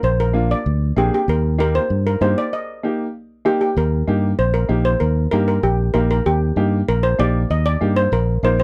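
A shimmering, metallic steel pan struck with hard rubber sticks carries the melody over a direct, amped fingered electric bass from the opening moment, and a clear, woody upright piano with short sustain joins the accompaniment at 0.3 seconds in this joyful, danceable cumbia fragment. The harmony moves from Bb to Eb, and a break arrives at 2.5 seconds before a new section begins at 3.8 seconds. All three parts sit up front in a dry, close 1970s-style studio sound with a faint mains hum beneath.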